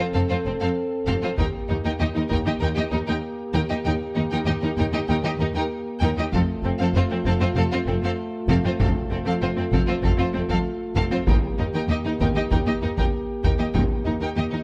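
A straight 4/4 pulse at 97 BPM drives this adventurous, heroic cinematic orchestral cue, cut from a longer piece, as bowed strings play throughout. A focused, lush violin section carries the melody over a distant, even second violin line, smooth vibrato violas, expressive soft-attack cellos and a clear double bass section in the background, while a mellow, roomy French horn section sustains chords moving between F and Eb. A taiko ensemble struck with hard sticks punches in briefly at 1.4 seconds and returns at 6.3 seconds, sitting up front with a large-room ambience, and light reverb gives the mix an epic sheen.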